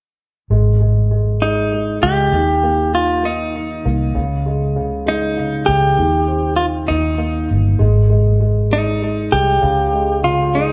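A swaying, romantic pop piece in 6/8 at 66 BPM, this excerpt sits in Ab major and moves gently through its chords over about ten seconds. An upright piano carries the accompaniment from 0.5 s, its woody, smooth tone and long sustain giving the harmony a vintage glow. Alongside it from the same moment, a muted, fingered electric bass sits up front with a dark, round, amped sound. At 1.4 s a clean, direct-recorded electric guitar takes the melody in a narrow upper range, its picked, compressed tone placed forward and coloured by spring reverb and tape echo. The band plays together in one room with a wet ambience, and the sound carries lossy compression artefacts.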